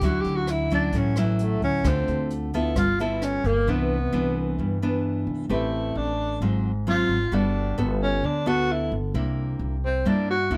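A straight 4/4 bossa nova groove moves along at 132 BPM in this breezy, romantic fragment cut from a longer piece. A brushed jazz kit with hi-hat, rim click and a boomy kick sets the feel in a small, natural-sounding room, then drops out at 3.6 seconds. Up front, a nylon-string guitar supplies fingerpicked classical-style accompaniment with a full-bodied tone, while a pizzicato upright bass adds a woody, growly, thumpy foundation. The tenor saxophone carries the melody as a solo for the full 10.6 seconds, its subtone whispered and intimate, with soft attacks, scooped notes and vibrato in a mellow jazz style. The harmony drifts through lush extended chords such as Dmaj9, Cmaj9 and Am9, and a light reverb gives the mix a touch of air.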